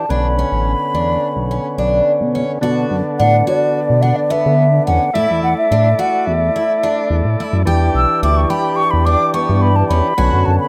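Driving along in a straight 9/8 at 214 BPM in eighths, this intricate progressive instrumental in B minor moves from Bmadd9 through Bm, Asus4 and Em7, with a dark, up-front synth bass gliding beneath a gritty, overdriven tonewheel organ marked by key click and percussive third-harmonic attack. A picked twelve-string acoustic guitar adds shimmering, octave-doubled arpeggios with audible finger squeak, while a mellow, hollow silver flute, close-miked and tongued with vibrato, carries the melody and takes a solo from 2.6 seconds. The small-room sound has the rough feel of a home demo, and this is a cut from a longer piece.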